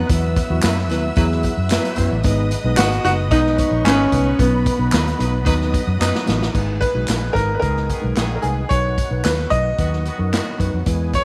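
Uptempo 1960s-style soul in B major at 112 BPM, warm and joyful, with a bright, brilliant concert grand piano carrying the melody up front over a round, foam-muted electric bass and a punchy big-band drum kit. A tight horn section and a smooth, bowed violin section add second lines, the violins dropping out at 6.5 seconds just after a drum fill as the music moves to its second section, while a mellow tine electric piano comps and a gritty, overdriven tonewheel organ with key click and chorus vibrato holds chords in the background. Tambourine, egg shaker and group handclaps sit low in the mix, and light reverb lends a small-room ambience to this cut from a longer piece.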